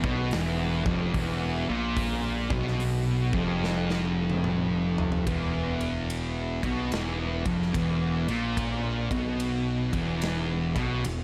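Stoner and doom metal with a heavy, sludgy mood and a swung feel, this clip from a longer piece sets a distorted, fuzz-soaked guitar riff up front over a second fuzzed guitar sitting in the background, both resting on an E5 chord, while an overdriven, direct-and-amped picked bass growls beneath and a big acoustic rock kit with a punchy kick, medium-tuned snare, bright ride and hi-hat cymbals, and toms plays a fill from 3.6 to 5.3 seconds, all set in light reverb and studio ambience.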